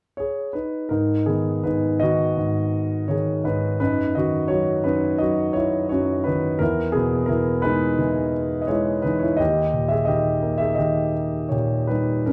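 A dark, mellow concert grand piano plays alone from 0.2 to 12.3 seconds in this bittersweet, moody classical fragment, a lyrical, rubato passage at about 84 BPM in G# minor, tuned to A4 = 441 Hz, that moves from G#m through C#m11/F# and E to D#, its intimate, up-front sound carrying deep bass, audible action noise and a smooth, vintage character within a moderate scoring-stage reverb.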